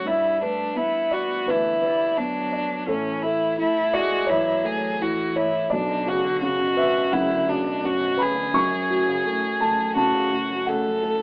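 Heard through an AM-radio filter with a moderate stone-room reverb, this fragile, melancholic neoclassical excerpt for piano and strings captures a trio playing together in one room with a loose, rubato feel. Up front, a single violin carries the melody in a rich, intimate sul tasto tone with light vibrato and an airy bow. A dark, mellow, boxy baby grand with short sustain accompanies it, while a distant cello floats a pure second line in the background. The harmony moves through G, A, Bmadd9 and F#m/C# over about 11.2 seconds.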